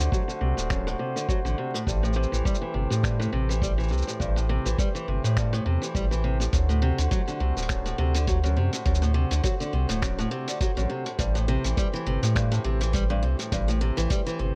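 A light reverb and a layer of vinyl crackle frame this short, delicate folktronica cut from a longer piece, giving it an intimate, dusty feel. Up front, a bright, boxy parlour steel-string acoustic guitar picks arpeggios, roughened by vintage 12-bit sampler grit and softened by a low-pass filter, tape echo and plate reverb. Beneath it, a reedy accordion holds mellow sustained chords in its own plate reverb, while a round, deep sine sub bass sits prominently at the bottom. The rhythm comes from a muffled, compressed sampler-style kit of cabasa, finger snaps and hi-hat, anchored by a thumpy electronic kick, all with a gentle swing on the sixteenths. The harmony sways between D7 and Am7 throughout, keeping the mood delicate and intimate.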